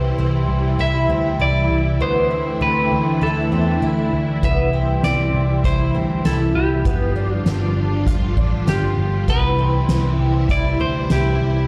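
A straight 4/4 pulse at 99 BPM carries this dreamy, ethereal dream pop excerpt in C major. It moves through C, Dsus2, Cmaj7 and G7. From the start, a dark, round, foam-muted electric bass sits up front with an amped, vintage tone. A fingerpicked twelve-string acoustic guitar spins boxy, octave-doubled arpeggios with a swing feel, treated with ensemble chorus and delay. A bright, warbling string machine playing violins holds sawtooth chords with a soft attack and its own ensemble chorus. Above them, a clean, warm electric guitar picks a delayed melody. At 4.4 s a soft-mallet drum kit joins with a boomy kick, a fat snare and hi-hat in a big room, playing until 11.2 s, while light reverb and a large studio tail give the mix a spacious sound.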